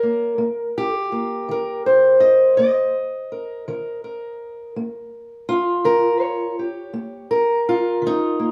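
A slow, straight 12/8 pulse at 55 BPM sets a soulful, swaggering tone in this brief acoustic country blues fragment, cut from a longer piece and resting on an Eb7 chord. A lone fingerpicked steel-string parlour guitar, dark and boxy with the woody character of old strings, sits up front and spans Eb3 to Eb5 across the full 8.5 seconds. The tuning sits at A4 = 442 Hz, and a moderate studio reverb gives the live, single-room performance a natural sense of space.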